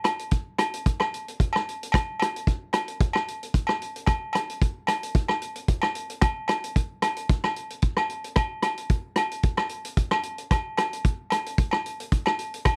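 Ringing agogo bells sound alongside a punchy, mid-forward vintage drum kit of hi-hat, kick drum and rim click, set up front in this joyful, carefree highlife groove at 112 BPM in 4/4 with a light sixteenth-note swing, captured as a dry, close 1970s-style studio recording cut from a longer piece.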